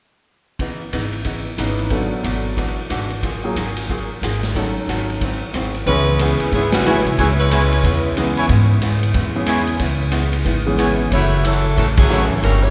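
A brisk swing with a moderately swung eighth-note feel drives this brassy big-band jazz passage, cut from a longer piece and set in a resonant church-like hall with a long, wet reverb. The drum kit enters at 0.6 seconds with ride, hi-hat, snare, kick and crash, its punchy kick and medium-tuned snare sounding natural in the big room, while the upright bass joins almost at once with a woody, growly pizzicato tone. A dark, clean hollow-body electric guitar and a deep-voiced grand piano fill in the harmony from the background, moving through rich minor-ninth and altered dominant chords in the opening section. At 5.9 seconds the saxophone section takes the melody, tight and up front with vibrato, and from 6.9 seconds the close-miked trumpet section adds clear stabs behind it, with full-band accents landing at 6.7 and 11.9 seconds. The saxophones return near the end over a minor-seventh chord as the passage breaks off.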